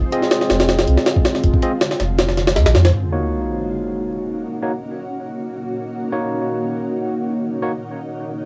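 Atmospheric and nostalgic, this short drum and bass cut from a longer jungle piece opens with a gritty, pitched-up sampler-style drum kit with a thumpy kick and high-tuned snare, a round, mellow dub sub bass and bright, barky electric piano stabs over a cloudy, blurred granular pad, then at 2.9 seconds the drums and bass stop as an electronic sub drop lands and a filter sweep runs across the dub-echoed electric piano, all carrying the character of a home cassette recording.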